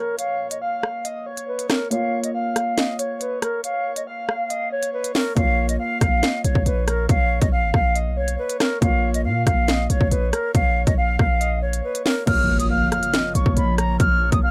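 A half-time drill beat at 139 BPM in Bb phrygian drives this dark, ominous hip hop excerpt, with a hard-clipped kick, sharp snare, crisp hats and rim clicks under a hollow, close-miked concert flute melody with vibrato, a breathy flute-like synth second line carrying chorus and delay, and a dark, boxy grand piano with audible action noise, while a heavy 808-style bass enters at 5.4 seconds after a filtered break, and a glassy FM pad and a background impact arrive around 12.3 seconds.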